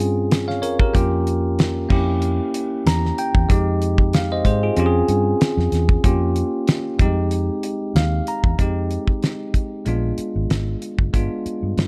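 Swung sixteenths in 4/4 carry this lush, 1970s-style soul fragment, silky and bittersweet in mood. A bell-like tine electric piano, clean and up front through its built-in speakers, plays rich extended chords and adds two short fills, over a round, foam-muted fingered bass and a dry, damped drum kit that enters at 0.3 seconds with a fat snare, tight kick and dark cymbals. A small room ambience keeps the sound intimate, and after 8.6 seconds the harmony turns toward tense altered dominant chords.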